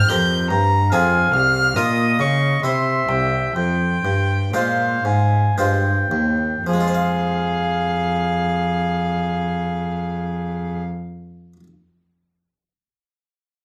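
In a stately 3/4 at 53 to 74 BPM, the music slows through its opening stretch before moving into a contrasting passage from 6.7 s. This solemn, flowing fragment of a baroque-style sonata movement in F minor is cut from a longer piece and tuned to A4 = 441 Hz. A single bowed violin carries the melody high above, its tone warm and expressive with vibrato and portamento, set at a distance. A solo oboe sings a roomy, classical-style second line beneath it. The continuo pairs a bright, plucked Italian-style harpsichord with one rich, up-front cello whose soft attack, vibrato and gliding portamento give the bass real expression. The harmony moves through Fm, Bbm and C, and after the other parts stop at 10.8 s the harpsichord rings on alone until 11.7 s, all within a moderate large-studio reverb.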